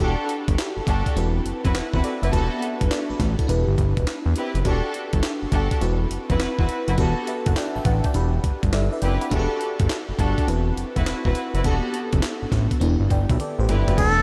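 Bouncy and slick, this swung new jack swing R&B cut rides a gritty, compressed breakbeat sampler-style kit with a thumpy kick, high-tuned snare, handclaps and tambourine under a fat, saturated analog bass that sits up front, while a lush, dreamy FM electric piano with a soft pad layer shimmers through chorus and phaser, adds a fill around 8.4 seconds, and is punctuated by smooth, bowed studio string stabs in a diffuse ambient delay, before a drum fill leads to a bright, buzzy trumpet with metal mute entering at 14.0 seconds over extended minor and major chords held above a steady E bass note.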